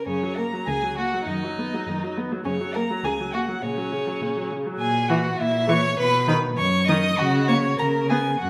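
Heard through the wet reverb of a recital hall, this brief cut from a quick, stormy and restless classical-period string quartet movement in 2/4 sets a focused first violin with vibrato singing the melody up front above a smooth, distant second violin line, an even viola accompaniment and a rich bowed cello bass.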